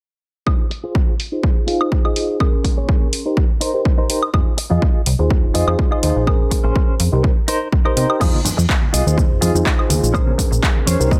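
Filtered disco house with a nostalgic, groovy feel, this excerpt cut from a longer piece opens with a reedy electric piano carrying gritty 12-bit sampler texture and phaser over a punchy, overdriven kick placed up front and a layered house kit of handclaps, hi-hat, shaker, woodblock and crash cymbal, the piano and kit pumping under sidechain and pushed through filter sweeps. A twangy, direct-recorded clean guitar with tremolo plays the riff from 0.7 seconds, and a funky, detuned analog bass with a moving notch enters at 4.3 seconds, rolling through Fm7, Bbm9 and Cm7 changes. At 8.2 seconds bright, soft-handed tube shaker and congas slip in, set in the background, and the guitar adds a short fill at 10.6 seconds in a dry, close-sounding mix.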